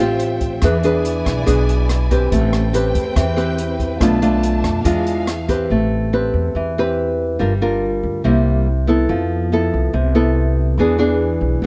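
Intimate and wistful, this bossa nova fragment, cut from a longer piece, moves in a straight, even four. A fingerpicked nylon-string guitar sits up front, its old strings giving a small, woody voice as it carries the accompaniment throughout. Beneath it, a pizzicato upright bass with steel strings adds a growly low line, while a lush, bowed violin section holds soft-attacked, vibrato-rich chords with a smooth top. An open jazz kit in a small room plays hi-hat, rim click and a boomy kick from 0.2 s, and both drums and strings drop away by 5.7 s, leaving guitar and bass to carry the second section alone. The harmony moves through jazz colours such as Am9, Bm7b5, E7b9 and Fmaj7#11, and the dry, close sound keeps the mood personal.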